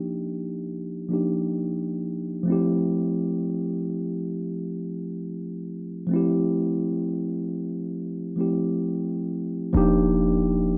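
A slow 66 BPM groove in 4/4 with swung sixteenths sets an unhurried pulse for this short contemporary R&B fragment, cut from a longer piece. The mood is smooth and romantic, carried from the opening by a mellow tine electric piano that sits clean and up front, playing accompaniment in its middle register through a low-pass filter. A filter sweep shapes the piano's tone from the start until 9.7 seconds, while the harmony moves from Ebmaj9 to Fmaj9 at 2.5 seconds and returns to Ebmaj9 at 9.7 seconds. At that same moment a deep, boomy 808-style bass arrives on a low Eb, its sine body layered with noise, striking with a fast attack and then decaying. The recording has light reverb and a faint mains hum beneath the playing.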